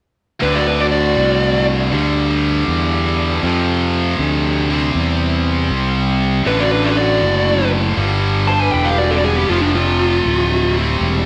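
A dark, smooth overdriven lead guitar carries the melody in this short swaggering rock excerpt, touching in briefly at 0.4 seconds before returning at 6.5 seconds with a slapback echo on its picked lines. Behind it, a lo-fi second lead guitar through a small cranked amp follows the same stretches with its own overdriven, echoed line, set in the background. A tight, bright, double-tracked distorted guitar drives the riff up front throughout, alongside a fuzzy, overdriven fingered electric bass with a warm, amped tone. The groove moves at 79 BPM in 4/4 with a swing on the eighths, cycling through D, G5, F and C. A moderate echo chamber reverb gives the whole a roomy, driving weight.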